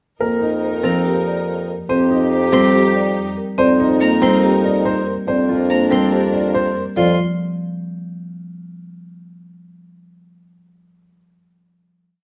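At 0.2 seconds this short, bright and hypnotic minimalist classical piece opens together: a grand piano with audible action noise circles through a repeated arpeggio cell, an up-front, vintage-toned marimba played with medium hard mallets repeats its own short accompaniment figure, and a solo bassoon holds a long, vibrato-laden low F beneath them. A clear clarinet and a lush symphonic string section float swelling held notes over this bed, the strings rich and smooth. A second marimba, struck with soft mallets for a mellow, woody, rounded sound, slips in at 0.6 seconds with a repeating melodic cell set back in the mix, and at 0.8 seconds a single close, bowed violin adds a high, even arpeggio figure. Moving in a straight 4/4 at 142 BPM, the harmony rests on F9sus4 before shifting to Bb6/F at 5.3 seconds. The music settles on a final F5 chord at 7.0 seconds, all of it captured with close, detailed microphones and a touch of light reverb.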